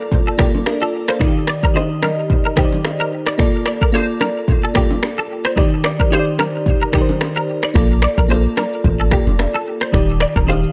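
A lightly swung afrobeats groove of finger snaps, deep kick, rim click and shaker drives this sunny, joyful excerpt, with bright hard-handed congas and bongos in the background, a sparkling, chorused FM electric piano up front moving between Bbmaj7 and Ebmaj7, and a clean, picked semi-hollow guitar riff with ensemble chorus and digital delay, while a deep, boomy 808-style bass joins at 7.8 seconds.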